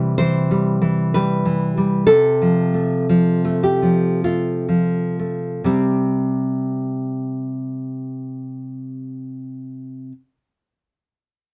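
A lone nylon-string guitar opens on a C major chord, fingerpicked with a full-bodied, deep classical tone that sits up front in close, detailed microphones under light reverb. This romantic solo piece in 3/4 moves with a free rubato feel at roughly 39-64 BPM, spanning C3 to C5, and the mood is sunny and warm. Through the first passage the pace slows, drifting from C to an F chord over a C bass at 2.1 seconds. At 5.7 seconds a second section begins on a bare C5 chord, and the guitar rings on until about 10.1 seconds. Tuned to A4 = 439 Hz, this brief excerpt is cut from a longer piece.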